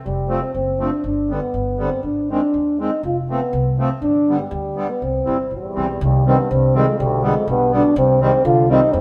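A warm euphonium carries the tune up front in this jolly, festive alpine folk fragment, its classical-style line sung with light vibrato yet sounding somewhat distant and roomy. Beneath it, a woody pizzicato upright bass with steel strings marks a straight 2/4 pulse at 122 BPM, while a reedy, sweet accordion with light tremolo tuning fills in the harmony with a smooth, dark color. At 5.5 seconds a second euphonium joins in a lower register with a soft attack, adding a gentle supporting line. The chords move through F, G and Ab before a shift at 6.0 seconds turns the music toward C minor and G/B. The band plays live together in a moderate stone room whose reverb gives the whole ensemble a natural, resonant space.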